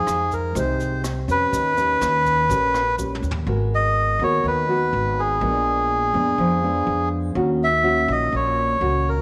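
A reedy, breathy melodica carries the melody up front in this melancholic, intimate bossa nova excerpt at 124 BPM in straight 4/4, settling into G# minor from 3.5 seconds. Beneath it, a dark, full-bodied nylon-string guitar plays thumb-plucked accompaniment while a woody, pizzicato upright bass holds the low end. A jazz brush drum kit sits in the background with a boomy kick, rim click, hi-hat and toms, alongside a grainy, close tube shaker, and both drop away at about 3.5 seconds after a drum fill from 3.0 seconds. From there the melodica, guitar and bass carry on together through a second section of rich extended chords such as G#m9 and A#7b9. A moderate echo chamber reverb with a small room ambience surrounds the recording.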